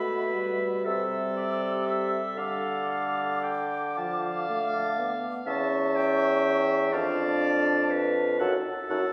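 In a 6/8 that stretches and relaxes with rubato, this slow romantic movement for wind quintet unfolds in a melancholic, solemn mood, cut from a longer classical piece. The silver concert flute carries the melody high in its range, airy and hollow with vibrato and a crisp attack, heard close and intimate. Beneath it the oboe sings a clear second line with a soft attack from a more distant, roomy position. The clarinet and French horn fill in the accompaniment: the clarinet mellow and up front, the horn set further back in the space. The bassoon anchors the bass with a warm, vintage tone and light vibrato. All five instruments sound together from the opening through roughly 9 seconds, the harmony moving from E5/B through Am/C, Dm, A7/E and Dm/F before arriving at a diminished chord at 8.4 seconds, all bathed in the lingering reverb of a recital hall.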